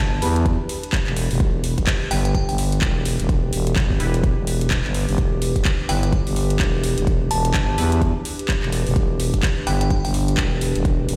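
This gritty, aggressive bass house cut, heard in a bare stone room over a big sound system, opens on a thick, growling FM bass that sits up front with overdrive and sidechain pumping, under a dark, nostalgic tape-like pad in E minor at 127 BPM with a swung 16th feel. A house kit of handclaps and metallic hi-hats enters at 0.2 seconds, followed by a punchy electronic kick at 0.5 seconds, while a nasal, band-passed sawtooth chord stab with phaser and dub echo pulses in the background. A crystalline synth bell, treated with chorus, tremolo and dub echo, floats its short melody twice, first from the start and again from 5.9 seconds, over a steady E minor chord.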